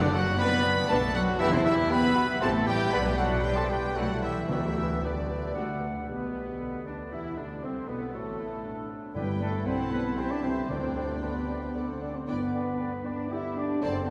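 Bathed in a long, wet cathedral reverb, this cheerful, lively classical-period orchestral movement in 3/4 has a dark, floating violin section carrying the melody, played sul tasto, while a rich second violin section, an airy silver flute, a distant oboe and, from 5.0 s, a mellow clarinet weave second lines. A dark bassoon and a hushed viola section fill out the accompaniment, a French horn section holds punchy sustained chords, and a roomy trumpet adds soft stabs. Cellos and a double bass section anchor the bass, and round, soft-mallet timpani touches arrive first at 4.5 s.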